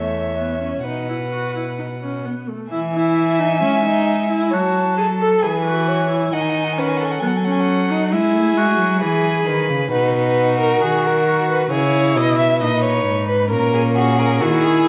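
A steady, straight 4/4 pulse at 66 BPM carries this elegant, joyful baroque-style fugue for string quartet in E major, heard as a cut from a longer piece. Four bowed players sound together from start to finish. The first violin carries the melody with an expressive, close tone, soft attack, vibrato and portamento, rising as high as B5. Beneath it, the second violin spins a focused, rich second line, while a more distant viola fills the accompaniment with its own vibrato and portamento. The cello holds the bass warm, intimate and up front, played sul tasto with an airy bow, light vibrato and soft attack. A brief opening on Bsus4/E and B gives way at 2.7 s to a passage moving through E, F#m7, B7/D# and C#m7 before arriving on F#7/A#, the quartet set in a wet recital hall reverb with a 1.6 s decay.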